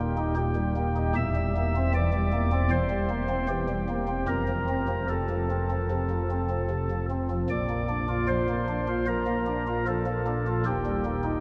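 Classical chorale-style music for solo pipe organ, majestic yet serene, heard in an 11.4-second cut from a longer piece, with soft flute stops in a baroque voicing that carry a chiff and a tremulant, sit up front and span from Eb1 to E5 as the harmony moves from Eb through C7/E and F to Bb and back to Eb, all bathed in a long, wet cathedral reverb.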